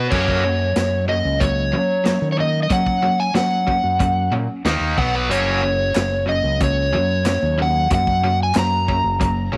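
A straight 4/4 groove at 92 BPM drives this confident, sunny classic rock excerpt, with a vintage drum kit of punchy kick, medium-tuned snare, hi-hat, crash and dark cymbals, under a growling, round, overdriven fingered bass placed up front. A dark overdriven slide guitar carries the melody up front, while two bright picked overdriven guitars play the riff, one biting with tremolo and the other crunchy in the background, over a chord movement centred on F#. A very quiet, hollow group handclap joins at 6.0 seconds, and the whole is set in light reverb with studio ambience.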